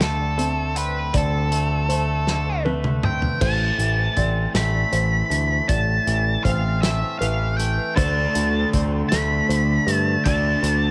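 Captured in a small studio room with noticeable ambience, this brooding, cinematic post-rock excerpt moves at a slow 53 BPM in a straight 6/8 in A minor, tuned slightly flat to A4 = 437 Hz. A dark, fuzz-drenched octave lead guitar carries the melody up front, while a picked electric bass sits direct and prominent beneath it. Arpeggios come from a clean, fingered, twangy electric guitar and a soft, felt-muted upright piano with audible action noise, both wrapped in digital delay, the piano staying intimate and in the background. A loose acoustic drum kit with dark cymbals, a medium-tuned snare and a tight kick plays a fill starting at 2.3 seconds, leading the harmony from D5 to A minor at 3.4 seconds. At 8.0 seconds a bright, overdriven picked guitar enters with a riff as the chord returns to D5.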